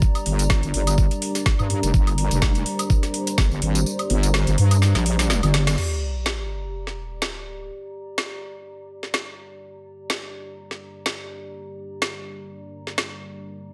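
A dark, moody analog pad and a warbling, lo-fi tape-like pad open this swaggering, aggressive bass house excerpt at 125 BPM in G minor, over an overdriven, knocking electronic kick and a garage kit of woody snare, metallic hats, crash, tambourine and woodblock; a heavy, detuned wobble bass pumps in at 0.3 seconds, and once the kick has dropped out, a drum fill and band accent lead into an up-front sub drop at 5.8 seconds, after which a filter sweep on the analog pad carries the rest as the bass falls away.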